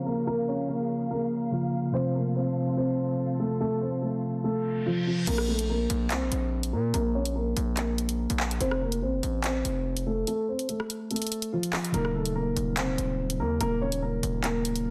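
A cold, dark drill excerpt at 144 BPM in half-time opens on a boxy, deep-voiced grand piano melody with tape echo over a mellow tine electric piano and veiled, con sordino strings under a filter sweep, until a reverse cymbal at 4.6 s ushers in a saturated, aggressive 808-style bass and an up-front electronic drum kit with bright hats, handclaps, rim clicks and crash at 5.3 s, the kick dropping out at 10.3 s before the electric piano returns beneath a dense, heavily limited master.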